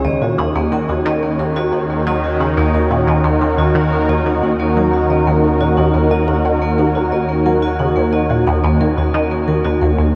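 A steady, straight 4/4 pulse at 89 BPM drives this short cut from a longer piece of ambient, sequencer-driven space music, resting on a single D#m chord for its full 10.2 seconds with an expansive, cosmic mood. Up front, a juicy, squelchy blip pluck with fast attack and short decay repeats a low riff through phaser and delay, while a sweeping pad of detuned sawtooth and noise holds evolving, airy chords treated with chorus. A vibraphone struck with hard mallets rings out metallic arpeggios with delay, its tone set in a boxy small room. Beneath them a round, dark analog bass sustains a deep D#2, and a breathy, wind-like tuned noise texture drifts in the background with its own reverb. The whole recording sits in a vast ambient reverb and carries the worn, warbling pitch drift of old cassette tape.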